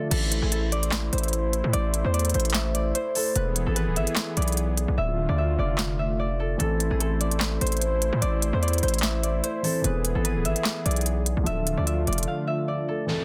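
A half-time trap groove of sharp snare, handclaps, crisp hi-hats and crash cymbal drives this brooding, menacing hip hop fragment, with the hats dropping out between 5.0 and 6.6 seconds and the drums and heavy, saturated 808-style bass halting together at 12.3 seconds for a brief break. Up front, the distorted bass hits with a fast attack and decays aggressively, while a ringing, fingerpicked concert harp carries the melody over a smooth, warbling analog pad of detuned sawtooth and triangle tones with lush chorus. A dark, mellow grand piano with short sustain sounds briefly at the very start and returns in the background from 6.6 seconds, and a downlifter closes the dense, heavily limited mix.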